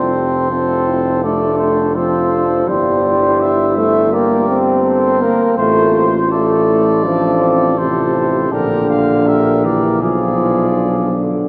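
A mellow trombone sits up front with a light vibrato and a vintage character, carrying the accompaniment from C3 to C4 in this triumphant, warm-hearted classical brass quintet excerpt. Two trumpets share the upper voices: one takes the melody from A4 to F5 with a distant, roomy quality, while the other plays a second line between G4 and C5. A French horn fills in the accompaniment from the background, also sounding far off and roomy, and a present tuba anchors the bass between F1 and B1. The piece moves at 82 BPM in 4/4 with a rubato feel, in F major tuned to A4 = 438 Hz, passing from F through C7/G, F/A and Gm/Bb before reaching a Bdim7 at 10.0 seconds. The trumpets drop out at 11.2 seconds, and the remaining parts continue to 11.5 seconds. A wet cathedral reverb with a 4.7-second decay gives the dark production a spacious glow.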